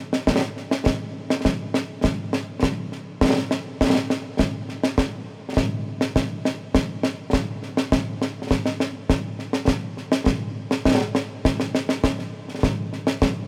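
Stirring and ceremonial, this short cut from a longer Scottish traditional piece features concert snare drum and concert bass drum, close and up front with bright cymbals and a light reverb, playing in a straight 4/4 from 0.1 to 13.4 seconds and moving into a new section at 11.5 seconds.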